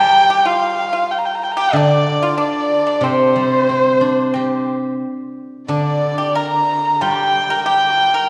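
Chinese traditional music for chamber ensemble, tender and wistful, moves with a rubato feel around 92 BPM in the G yu mode across this 8.3-second excerpt from a longer piece. Two dark, bowed erhus carry the lines with vibrato and portamento: the up-front lead sounds nasal and boxy, while the second, softer part is woody. A dry, percussive pipa adds another line, and a silvery, ringing steel-string zither, played up front with fingerpicks, supplies the accompaniment, all set back in a wet concert hall.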